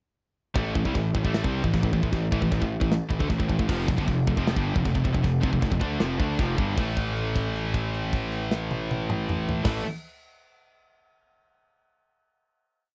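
Heavy metal piece at 154 BPM in A minor, heavy and epic in mood, built on a power-chord riff moving from A minor to F5. Two bright, scooped high-gain guitars play the riff, one up front and one in the background, joined by a dark, double-tracked fuzz guitar and a growly, overdriven picked bass driving eighth notes that double the riff. A tight metal drum kit with bright cymbals, including china and crash, plays a half-time groove before everything resolves at 6.8 seconds onto a held A5 chord, all captured in a dry, close 1970s-style studio sound.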